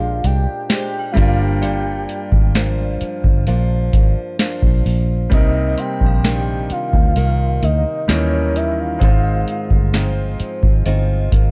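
Contemporary R&B in C minor, moody and sensual, moving at a slow 65 BPM in a straight 4/4 feel, heard as a short cut from a longer piece. A booming analog drum machine sits up front with a deep kick, crisp snare and metallic hats, joined at 0.2 seconds, while a vintage muted fingered electric bass, round and foam-muted, holds the low end just as prominently. A clear grand piano and a bright, fingerpicked flamenco guitar with delay weave accompaniment and arpeggios beneath a soft, octave-layered synth lead that carries the melody with chorus, tremolo, vibrato and delay until it drops out at 10.2 seconds. From 0.7 seconds a faint FM synth chime, inharmonic and warbling with ensemble chorus and a long release, glimmers in the background. The harmony drifts from Bb13 through Gm7 and Cm9 to Eb7b9 and Ab6, all wrapped in digital ambience and a dark, warm production.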